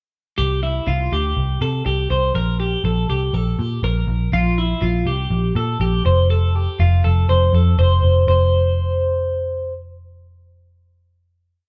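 Twelve-string electric guitar and muted picked electric bass enter together at 0.4 seconds in this breezy, nostalgic jangly indie pop piece in F major at 122 BPM, the bright, twangy guitar ringing out arpeggios through spring reverb until 9.7 seconds while the dark, round, foam-muted bass drives eighth notes up front through a moderate live-room ambience and carries on alone into the final chord until 11.7 seconds.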